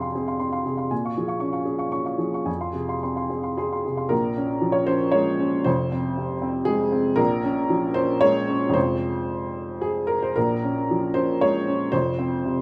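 Neoclassical minimalist piano in 3/4 with a rubato feel, wistful and intimate, cut from a longer piece. A solo upright piano with a woody, vintage tone sits up front, ranging from deep bass to high treble as the harmony sways between F minor and B-flat minor seventh before settling on an open fifth near 11.9 seconds. A moderate scoring-stage reverb gives the instrument a soft halo of space, and the passage shifts into a new section at 4.1 seconds.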